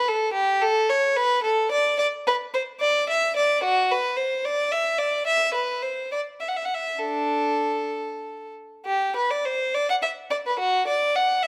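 A single bowed violin carries this short, radiant fragment of a baroque-style suite movement for unaccompanied violin, cut from a longer piece. The player's gut-string tone is rich and faintly reedy, shaded by light vibrato and shaped in period style, and it sits up front in a light reverb. The music moves in 6/8 at roughly 60-75 BPM counted in dotted quarters, with a rubato feel that lets the line breathe freely. Tuned to A4 = 439 Hz, the melody ranges from D4 to F#5 and keeps a serene, unhurried character. A new phrase begins at 8.9 seconds, restating the opening material before the fragment ends at 11.5 seconds.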